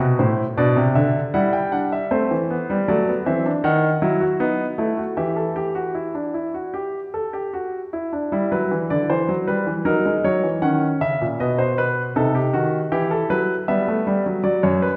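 A polished grand piano carries this classical, baroque-style three-part fugue on its own, with a present, up-front tone and a short sustain. Set in E minor at 78 BPM in a straight 4/4, the music feels stately yet lively, and the writing spans from F#2 up to G5. The harmony opens on a rootless D7 before settling through A minor, B7 over D#, and E minor, then turns toward F#7 and B around 9.9 seconds and returns to E minor near 12.9 seconds. A wet recital hall reverb surrounds the piano, and the room is heard from further back, lending the counterpoint a spacious glow. This 15-second excerpt is cut from a longer piece and stops on a B minor chord over F#.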